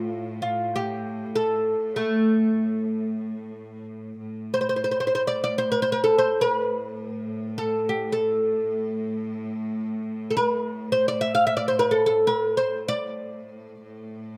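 Recorded outdoors with a light reverb and free of room sound, this short excerpt from a longer Arabic maqam ensemble piece unfolds in free time in A maqam bayati. A fretless oud carries the melody from start to finish, sitting up front with a woody, bright tone from its plectrum-plucked double strings as it moves between A3 and F5. Beneath it, a bowed cello section holds an intense drone on A2 throughout, with light vibrato, placed much lower in level than the oud. The mood is melancholic and hypnotic, and the same material returns for a second, longer pass beginning at 4.2 seconds and running to 14.4 seconds.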